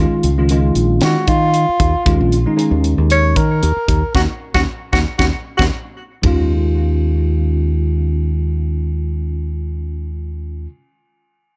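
A worn, slightly out-of-tune tine electric piano with ensemble chorus and a growly, punchy fingered electric bass open this nocturnal, driving electric jazz fusion excerpt at 115 BPM in a swung 4/4, with a crisp fusion drum kit, featuring a high-tuned snare and punchy kick, joining almost at once. At 1.0 seconds a breathy, mellow tenor saxophone takes a jazz-style solo with light vibrato, scooped notes and tape echo, sounding distant and roomy, while the band hits an accent from 4.1 seconds. Over an Eb7sus2 chord that shifts to Ebsus2 at 6.2 seconds, the sax and drums drop away, leaving the piano and bass in a small room ambience.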